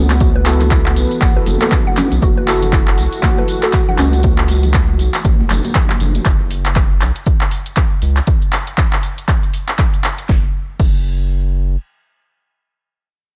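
A punchy, overdriven electronic kick and a round, wave-folded analog bass drive this hypnotic afro house cut. A fat-snared deep house kit carries handclaps, hi-hat and crash. Ringing, distant congas and a jingly tambourine sit in the background until about 6.2 seconds, alongside a smooth, detuned sawtooth pad that pumps over an F#m7 chord. In the opening seconds, a woody FM mallet-like pluck with phaser and sampler grit pumps in the background beside a worn, slightly out-of-tune tine electric piano that also pumps, and both drop out by about 4.5 seconds. It is all on a dry, gritty cassette-saturated recording.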